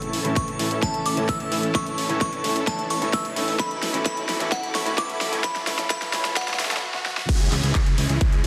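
A dense, heavily limited mix sits in a lush hall reverb as this festival progressive house fragment builds with emotional, powerful intent. A glassy synth bell carries the melody through chorus and digital delay, over a clear, slightly worn concert grand piano and a rich chamber string section in the background, both pumping against the sidechain. Bright, detuned supersaw chords play a riff through a sweeping low-pass filter and delay, while a fat analog bass sits very quiet underneath. A big-room dance kit with a huge overdriven snare, handclaps, hi-hat and crash runs drum fills through the build, a punchy, up-front electronic kick joins at 0.4 seconds, and a riser and downlifter add faint electronic effects. The build-up gives way to the drop at 7.3 seconds, landing on C#m after the bell, piano and strings have fallen away.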